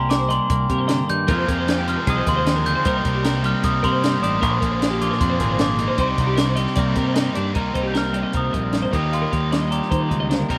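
A straight 4/4 pulse from a compact cocktail drum kit, dark and smooth with a high-tuned snare and punchy kick, drives this wistful, intricate math rock and midwest emo passage cut from a longer piece. A glockenspiel with rubber mallets carries a mellow, bell-like melody over two bright, twangy twelve-string electric guitars, one playing chordal accompaniment with slapback echo and the other picking arpeggios. A growling, overdriven fingered bass sits beneath, and a crunchy, double-tracked overdriven guitar riff joins at 1.3 seconds. The harmony moves through Cm9 and Fm11 before shifting to Cm7 at 7.6 seconds and Ebmaj9 at 8.9 seconds, all in a dry outdoor sound.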